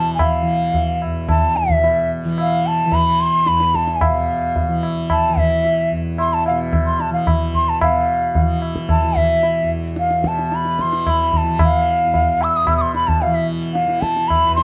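An airy bamboo bansuri with vibrato and tongued notes carries the melody up front in plate reverb over a bright, buzzing, shimmering tanpura drone and a high-tuned, ringing tabla that enters at 0.2 s close and dry, in this serene, radiant Hindustani classical passage at 111 BPM in 7/4, cut from a longer piece, with a dark, warm production and a new section arriving at 7.8 s.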